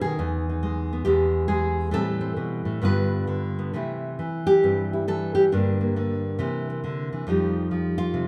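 Swinging and playful, this short solo jazz excerpt moves at 136 BPM in 4/4, with a swung eighth-note feel loosened by rubato. A single nylon-string guitar carries everything, fingerpicked and up front, its fresh strings giving a bright, full-bodied acoustic tone with a deep classical character and audible finger squeak. The opening harmony moves from Emaj7 through E7#9 and Am7 to G7 before settling into C major at 3.7 s on a C6 chord. From there the line passes through Gm and C7 and comes to rest on Fsus2, the guitar ranging from E2 up to B4. A wet, large studio reverb with a 1.3-second decay surrounds the instrument, and the overall production is dark and warm.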